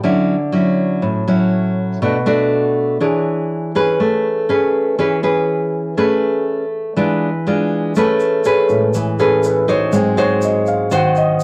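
Bossa nova in A major at 121 BPM, sophisticated and romantic, cut from a longer piece: a bright, classical nylon-string guitar sits up front, fingerpicked with audible finger squeak through lush changes such as Dmaj9, Bm7 and E7b9, before a grainy egg shaker joins at 8.0 s and a warm concert grand piano with deep bass takes a solo from 8.7 s, all carried in a wet studio reverb on a homespun cassette recording.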